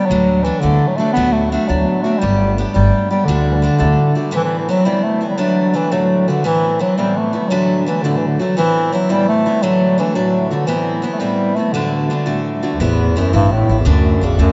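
Drenched in a vast, echoing cathedral reverb with dulled highs, this rollicking, bright Celtic jig excerpt in 6/8 sets an up-front, classical-style bass clarinet melody over a boxy, picked parlour steel-string acoustic guitar with audible finger squeak, while a woody pizzicato upright bass plays from 0.1 to 3.9 seconds and returns at 12.8 seconds.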